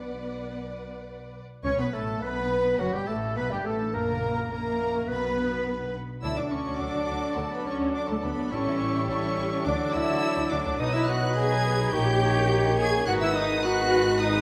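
Classical orchestral music in a stormy, restless romantic vein, cut from a longer movement, where smooth bowed violins with vibrato carry a high melody over a focused second violin line, expressive violas, warm cellos and rich, close double basses, while mellow French horns hold sustained chords and a very quiet concert harp rings out fingerpicked arpeggios; from 1.6 s an airy, hollow flute, an oboe and a distant bassoon add background lines as roomy trumpets punctuate with stabs, set in a moderate scoring-stage reverb.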